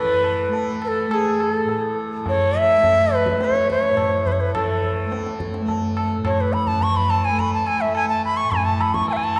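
Serene and meditative, this short Hindustani classical fragment in raga Hamsadhwani on A moves at 105 BPM in a straight 4/4, with an airy, reedy bamboo bansuri carrying the melody up front and close from G#4 to C#6, a softly plucked, buzzing, shimmering tanpura drone sitting lower and quieter beneath it, and a low-tuned, compressed, saturated tabla with a short ring entering at 0.2 seconds, all bathed in a vast cathedral reverb with a dark, rolled-off top end.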